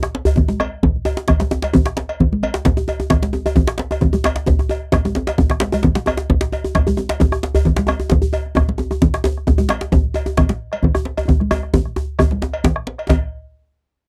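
A round, close bombo and a deep, dry djembe open this earthy, driving West African drum ensemble excerpt in a straight 4/4, joined almost at once by a second, tight, cracking djembe with metal rattles played up front with hard hands, a metallic cowbell at 0.3 seconds and bright, damped congas under soft hands at 0.4 seconds, all caught in a close 1970s-style studio sound with light reverb and drum fills at 5.5 and 11.3 seconds.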